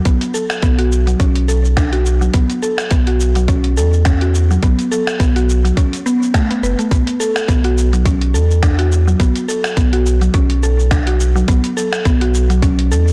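A woody, mallet-like synth pluck stands out front, spinning mellow FM arpeggios through chorus and tape echo in this mystical, earthy organic downtempo piece, cut from a longer work, in B minor at 105 BPM with a 16th-note swing. Beneath it, a deep, round sine sub bass sits up front with transformer saturation and sidechain pumping, running the full 13.1 seconds. A tight, tape-warm electronic kick drum carries the pulse until 12.8 seconds, while a gritty, compressed sampler-style kit adds cabasa, finger snaps and hi-hat in a small room, its snare softly clipped. The harmony moves between B7(no3) and A/B, returning to B7(no3) at 6.9 seconds. Light reverb surrounds a blown-out, overdriven mix.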